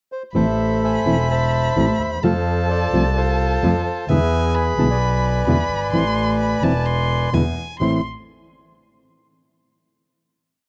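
This is a dry, close recording in a small room with a 1970s studio character, and it captures a complete, brief tango that feels passionate and melancholic with a rubato lilt. The reedy, smooth bandoneon opens the pickup at 0.1 s and carries a motif-based melody built in sentence-like phrases, touched with a slapback echo. From 0.3 s the other parts join: a thumb-plucked nylon-string guitar sits up front with full-bodied short chords, and a bowed double bass adds a biting, vibrato-laden line in the uneven three-and-two groupings of tango rhythm. Above them, a single warm violin traces a soft-attacked counter-melody, sliding expressively between notes with portamento. The harmony moves from A minor through F and E7 before settling on a final A minor chord at 7.8 s.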